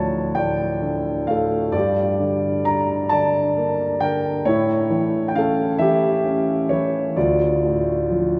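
Reflective and dark, this classical excerpt for solo grand piano moves in a slow, rubato 6/8 at 44 BPM in D harmonic minor, its mellow, boxy tone sitting up front with long sustain across a range from D2 to Bb5 as the chords pass from Dm through Gm and A7 back to Dm at 7.2 seconds, all bathed in the long wash of a vast cathedral.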